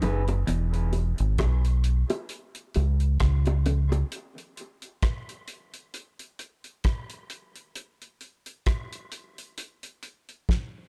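Swung sixteenths in 4/4 drive this heavy, hypnotic dub reggae excerpt, where a brief, twangy clean electric guitar riff with dub echo sits in the background, a round, up-front fingered bass and high-tuned, echoed bongos fall away by 4.1 seconds, and a dry, damped 70s drum kit with fat snare, tight kick, rim click and hi-hat carries the break on alone until a fill at 10.5 seconds, all inside a dark small-room sound.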